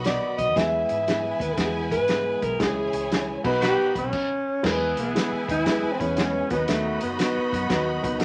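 Heard through a moderate club reverb, this joyful uptempo 1960s-style soul excerpt in E major at 117 BPM with swung eighths features a dark, up-front alto saxophone solo with vibrato and scooped notes over a woody upright piano, lush bowed strings with portamento, a lightly overdriven tonewheel organ with slow rotary, a round foam-muted fingered electric bass and a muffled lo-fi vintage drum kit, with a band accent from 2.6 s, a stop at 4.1 s and a tight horn section joining in the background at 3.6 s.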